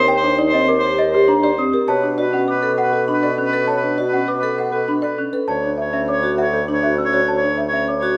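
In a straight 3/4 pulse at 100 BPM, this hypnotic, bright fragment of minimalist classical pattern music sets a woody, rustic folk marimba carrying the melody over metallic, ringing vibraphone arpeggios, while a clear, up-front oboe with light vibrato adds a second line and a warm bassoon anchors the bass. A delicate, bell-like celesta joins at 0.5 s with its own sweet arpeggios high above. A moderate scoring-stage reverb surrounds the ensemble as the harmony moves from Eb6 to Bm7 to Dmaj7.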